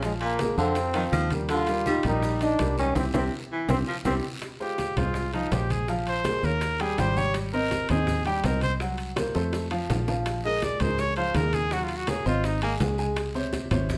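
Danceable and driving, this salsa cut from a longer piece opens with an up-front trombone carrying the melody with light vibrato and a punchy, smooth-topped tone until 4.1 s, shadowed by a distant, roomy baritone saxophone on a second line. The band hits a shared accent and a drum fill to close that opening passage, and then a close-miked trumpet takes a clear, pop-style solo from 4.6 s to 12.7 s, with a second drum fill arriving midway. Underneath, a brilliant, woody upright piano supplies accompaniment, while a dark, round fingered electric bass sits up front with a foam-muted, amped sound. The percussion stays low in the mix: soft-handed, low-tuned congas in a large room, tight high-tuned bongos, ringing metal-shell timbales, a raspy guiro and grainy, mellow maracas. A moderate large-studio reverb gives the ensemble a sense of space.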